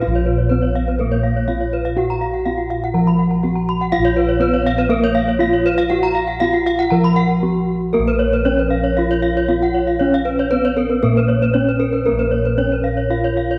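Bronze metallophones and bossed gongs sound together from the start of this hypnotic, brilliant gamelan fragment in Bb pelog at 120 BPM, with uneven beats. A dark, smooth wooden-mallet metallophone carries the melody over round, mellow gongs struck with padded beaters and placed up front, while two horn-mallet metallophones add arpeggios: one boxy, the other higher, bright, close-miked and dry, and each shimmering with paired-tuning beats. A brief break at 7.2 seconds leads into a new section at 7.9 seconds, and the whole recording sits in moderate concert-hall reverb with a worn, warbling cassette-tape pitch drift.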